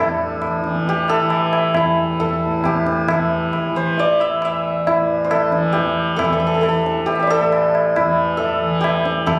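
A straight 7/4 cycle at 136 BPM underpins this meditative, solemn fragment of Hindustani classical music in raga Malkauns on E, tuned to A4 = 442 Hz. Up front, a bright, hammered, shimmering santur carries the melody between D4 and A5 over a softly plucked, buzzing tanpura drone, while a low-tuned, ringing tabla joins at 0.4 s and plays through to the close at 9.4 s. The sound has the character of a phone capture in a live room, with club reverb and compression shaping the ambience.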